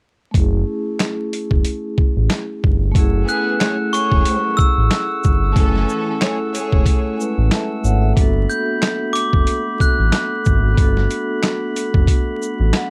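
A mellow, soft-mallet vibraphone under a filter sweep opens this dark, gritty boom-bap hip-hop cut at 92 BPM in F# minor, over a thumpy, pitched-down sampler drum kit with claps, hi-hat and shaker and a deep, round analog bass, all steeped in vinyl crackle, before a clean tonewheel organ with key click enters at 3.0 s, a bright, sparkling glockenspiel melody with tape echo arrives at 3.3 s alongside smooth bowed string stabs, and the vibraphone closes with a fill at 12.4 s.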